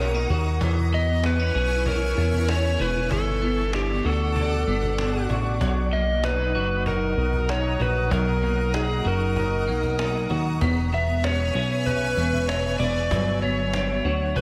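Blissful and dreamy, this dream pop excerpt sets a dark, overdriven slide guitar melody trailing dub echo over a glossy, up-front chorused synth bass, twangy clean electric guitar arpeggios with chorus and echo, a cloudy, evolving granular cloud pad holding sustained chords, and a woody, distant cajon that enters at 0.3 seconds in the background, all within an echo-heavy mix of digital ambience.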